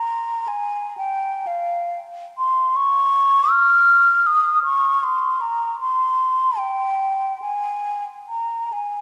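A lone concert flute opens the recording, mellow and hollow in tone, playing a free, expressive classical line in F minor. The mood is yearning and lonely, moving at around 78 BPM in 3/4 with uneven beats and a rubato feel that lets the phrasing breathe. Sitting up front, the flute ranges from F5 to F6, its airy sound shaped by tongued notes and vibrato. A wet church reverb with a long 3.5-second decay surrounds the instrument, and the overall production is dark. Tuned slightly low at A4 = 437 Hz, this nine-second passage is cut from a longer piece.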